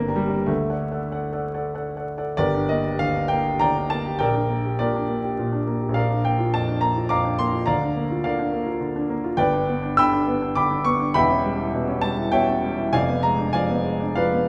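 A warm, smooth grand piano carries this romantic character piece alone, sounding vintage and sitting up front, its range stretching from E1 to E6. The music is in G minor and 3/4 time, moving with a rubato feel between roughly 92 and 108 BPM, and the mood is bittersweet and passionate. After a brief opening passage settling on D, a second section begins at 2.4 seconds on G minor and passes through Bb harmonies before turning to G major at 9.4 seconds. Near the close the harmony darkens through a half-diminished chord and a diminished seventh, leaving the phrase unresolved as this cut from a longer piece ends at 14.5 seconds. The piano rings in a reverberant recital hall, and a layer of vinyl crackle gives the sound an aged patina.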